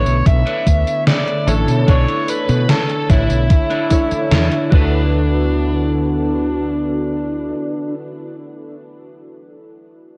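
A biting, overdriven lead guitar with tape echo carries the melody over a warbly lo-fi synth keys part, a mellow tape-like pad with chorus and built-in reverb, a clean semi-hollow electric guitar riff and a round, woody fretless bass, opening this dreamy, nostalgic vaporwave excerpt at 74 BPM in D major. A thumpy, overdriven electronic kick and a gated 80s digital drum machine with hi-hat, tambourine and a gated-reverb snare drive the first section, stopping around 4.7 and 4.9 seconds as the harmony moves from Bm11 to D6. The synth keys play on alone until 10.2 seconds, all of it colored by cassette-tape grain and a light digital ambience.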